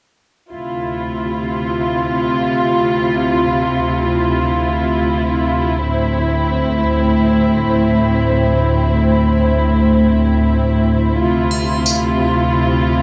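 A veiled, con sordino symphonic string section sustains dark bowed chords with light vibrato up front, moving from Dm9 to Am/D and back in free time through this melancholic D minor trip hop excerpt under moderate spring reverb, while a brief, small-room touch of triangle and tambourine sounds at 11.5 seconds.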